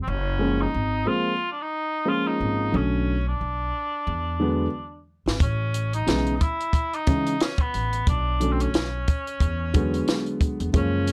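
A mellow cor anglais carries the melody of this cool, smoky jazz-hop fragment with a light vibrato and a roomy, classical-style tone, over a woody, thumpy upright bass plucked on gut strings. A dark, vintage concert grand piano joins at 0.4 seconds with intimate accompaniment, its action noise audible and its low end deep, moving through lush ninth chords in a swung 4/4. A compact cocktail drum kit enters at 5.3 seconds, bringing a punchy kick, a high-tuned snare and hi-hat from a tight booth, all under a light reverb.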